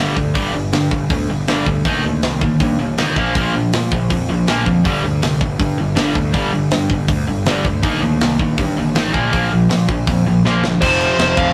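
A straight 4/4 punk rock pulse carries this urgent, raw excerpt, where a cranked, double-tracked stack guitar riffs up front over G5, Eb/G and Bb5 chords, a growly fuzz-laden picked bass adds grit, a tight metal drum kit with a mid-forward, rolled-off top and a tight kick enters at 0.2 s and plays a fill at 10.4 s, and a smooth overdriven lead guitar cuts in brightly at 10.8 s on an F5 chord, all caught in a rough rehearsal-room sound with tube saturation and light reverb.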